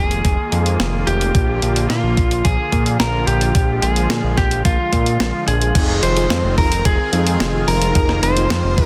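A straight 4/4 pulse at 109 BPM drives this moody synthwave excerpt in F minor. A thumpy electronic kick and a clean 12-bit drum machine with a medium-tuned snare, hi-hat and crash sit under a fat, detuned sawtooth analog bass up front, while a brassy, nasal analog pad with chorus, vintage sampler grit and sidechain pumping hangs in the background and a dark, slightly broken-up lead guitar carries the melody through digital delay over Fm7 and Bb. Mellow synth brass stabs arrive at 5.8 seconds, and a very quiet, shimmering string-machine violin line joins at 6.0 seconds, all in a dry, dense, heavily limited mix.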